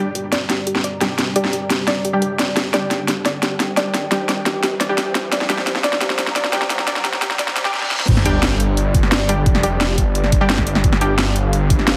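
This is dark technical drum and bass, tense and dark, cut from a longer piece and built around a long build-up that breaks into a drop at 8.1 seconds. A deep, moody analog pad holds sustained chords in the background with chorus and sidechain pumping, while a warbling, lo-fi pluck spins arpeggios through chorus and tape echo until 7.7 seconds. A bold, punchy orchestra-hit-like synth stab cuts through with its own reverb, cassette tape colour and tape echo, and filter sweeps run across the pad, pluck and stab through the build. Up front, an overdriven drum and bass kit with a cracking snare and bright hats drives a drum fill, as a background riser and a reverse cymbal lead into the drop. There, a thick, detuned saw bass with chorus, overdrive and sidechain pumping joins an overdriven, knocking electronic kick, and an impact and sub drop hit under a heavily compressed, radio-like sound in a moderate digital room.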